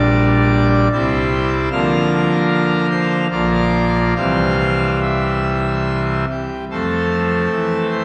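A pipe organ on full registration opens the recording alone, its mixtures giving a brilliant, majestic sheen to a chorale-style passage in F major. The mood is serene and reverent, moving in a gently flexible 3/4 at roughly 69-76 BPM with a rubato feel. Romantic voicing spreads the sound from a deep Bb1 up to F5, and the instrument sits up front while a wet church reverb with a 2.9-second decay lingers around every chord. The harmony moves through Gm/Bb, C and Bb/D before settling on Bb and C again, and a new section arrives at 6.7 seconds with a resolution to F. This brief fragment is cut from a longer piece and lasts 8.0 seconds.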